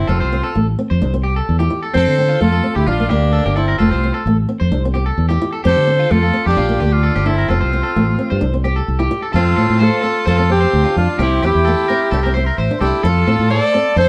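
A bright, forceful alto saxophone carries the melody up front in this joyful highlife excerpt, its smooth top and pop-style vibrato riding a straight 130 BPM groove in 4/4 and F major. Beneath it, a brilliant jazz-style trumpet plays a second line with light vibrato and scooped notes, present but set a little behind the saxophone. A round, warm fingered electric bass sits up front with a punchy, direct amped sound. A dark, fingerpicked flamenco guitar fills in the accompaniment, while a twangy, slightly broken-up electric guitar picks arpeggios. At 9.3 seconds, as the chords move through F and C, a reedy, airy accordion enters in the background with sustained chords and a slow beating shimmer. The whole band sounds as if playing live in one room, with moderate studio reverb giving the mix a sense of space.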